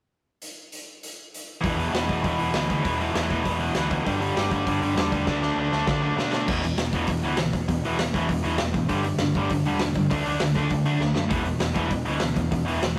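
Rebellious and rowdy, this punk rock excerpt charges along at 198 BPM in a straight 4/4. A raw garage drum kit with a punchy kick, gritty saturation and a rolled-off top opens alone at 0.4 seconds and adds fills at 5.3 and 11.0 seconds. At 1.6 seconds it is joined by an up-front, overdriven cranked stack guitar riff, a bright distorted guitar riff in the background and a growly overdriven picked bass, all cycling through E5, G5 and D5 power chords in a rough rehearsal-room recording with moderate reverb.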